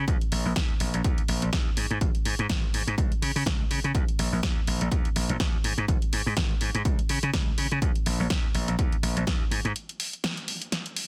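Sunny and joyful, this filtered disco house excerpt at 124 BPM in 4/4 with a 56% sixteenth-note swing rides on a bright, amped slap bass, pumping with sidechain under a low-pass filter, alongside a dry, analog electronic kick drum up front and a layered house kit of punchy snare and bright hi-hats, the hats also pumping and the drums carrying small room ambience, until the bass and kick drop away for a break at 9.8 s that leaves the kit running to 11.1 s, all in a dense, heavily limited modern master with little reverb.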